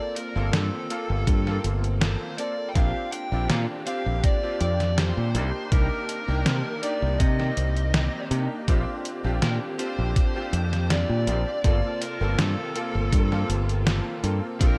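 Wrapped in digital ambience, this dreamy, woozy vaporwave fragment opens on a dark, compressed fuzz lead guitar carrying the melody through distortion and tape echo, over a clangy, vintage electric grand piano shimmering with ensemble chorus. A detuned 8-bit drum machine's hi-hat and snare sit up front with a gated-reverb snap, a punchy fingered electric bass enters at 0.4 seconds, and a thumpy electronic kick arrives at 1.3 seconds. From 2.8 seconds a lush, distant string section holds very quiet bowed chords beneath the slow drift from Gm11 through Bb6 and Cm7.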